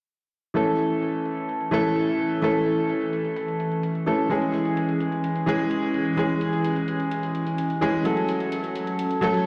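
Festival progressive house with an uplifting, euphoric mood, this short cut opens with a clear, worn grand piano up front at 0.5 seconds, its long-sustaining chords carrying a tape echo as the harmony moves from A to C#m to F#m. A lush, thick sawtooth pad with detuned unison voices, an airy noise layer and a slow attack enters just after, treated with chorus and phaser, while layered, metallic electronic hi-hats sit in the background behind a low-pass filter and a filter sweep. The whole mix sounds as if played on a big sound system in a bare stone room, bathed in a huge ambient reverb.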